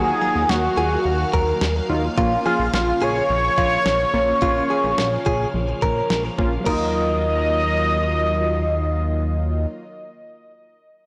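An up-front, bold octave-doubled sawtooth lead with chorus, phaser, delay and vibrato carries the melody in this nocturnal, melancholic synth-pop excerpt at 107 BPM in Eb minor, over a bright, clean direct-recorded electric guitar second line with delay until 8.3 s, round chorused analog keys, a swirling phased string machine, a very quiet lush unison pluck arpeggio, a dark, glossy chorused synth bass and a thumpy, fat 12-bit drum machine playing from 0.5 to 6.8 s, all set in a lush hall reverb and a blown-out, overdriven mix.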